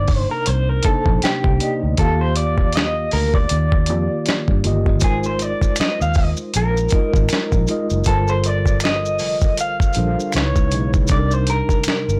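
A tremolo-treated electric guitar through a small old amp, slightly broken-up and up front, carries an introspective, soulful neo-soul melody at 79 BPM with a swung 16th feel over a mellow tine electric piano, a dark, foam-muted fingered bass with transformer saturation and a gritty, tape-toned sampler-style drum kit of thumpy kick, snare, hi-hat and finger snaps, while close, dry maracas and finger snaps join at 5.0 seconds, all in a blown-out, overdriven recording with light reverb that moves from Cm9 through Ebmaj9, Ab69, Gm11 and C#m9 back to Cm9 in this excerpt cut from a longer piece.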